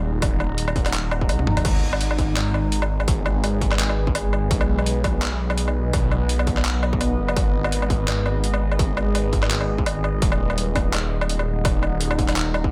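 In a lightly reverberant mix, this dark, heavy half-time drum and bass excerpt at 168 BPM in G# minor pairs a swirling, thick, phased and detuned saw bass up front with a deep, moody ambient pad of sustained chorused chords pumping under sidechain, while a gritty, pitched-down boom bap sampler-style kit of crash, handclaps, hi-hat, toms and woodblock and a distorted electronic kick enter at 0.2 s, with a drum fill at 1.4 s as the harmony moves from D#m through G#m and B.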